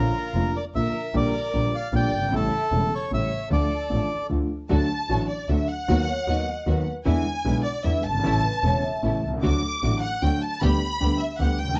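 A reedy, up-front bandoneon carries the melody in this dramatic, sultry rubato tango at 152 BPM in 3/4, alongside woody, bowed violins, a smooth vintage grand piano and a biting, earthy double bass, before the harmony turns from D harmonic minor to D major at 4.7 s, when the violins step forward as soloists, intimate sul tasto string stabs sit in the background, and a ringing, metallic vibraphone with medium mallets adds a second line from 6.1 s to 9.3 s, all inside a dark, warm production with light reverb.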